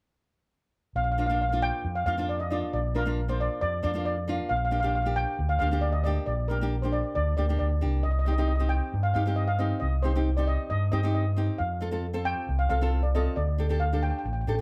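The recording has the sound of a band playing live in one room, with light reverb around it. This is a carefree, sunny calypso in Bb major, cut from a longer piece, moving at 136 BPM in a straight 4/4 and tuned slightly high with A4 at 445 Hz. A mellow lead steel pan, played with soft rubber sticks, carries the melody from 1.0 seconds, its metallic shimmer sitting up front. An overdriven fingered electric bass starts at the same moment, dark and round with an amped edge, also placed up front and the loudest of the three parts. A fingerpicked nylon-string guitar joins at 1.2 seconds with classical, acoustic accompaniment beneath them. The chords pass from Bb through Gm/Bb and Cm to F, settling on Dsus4 near the close.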